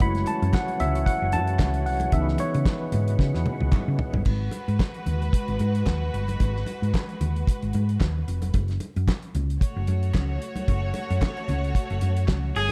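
A worn, slightly out-of-tune tine electric piano leads this driving, glamorous disco cut at 112 BPM in F# dorian, over a gritty overdriven organ with slow rotary and chorus vibrato, a round, punchy hollow-body bass, a dry, fat-snared drum kit, bright thin-skinned congas and crisp handclaps in the background. A drum fill carries the groove to 4.3 seconds, where the organ and piano drop out and a smooth, bowed string section takes the second line over G#m7 and F#m chords. Just before the close at 12.6 seconds, a bright, twangy electric guitar with lush chorus sounds a single note, all within a dark, lightly reverberant production.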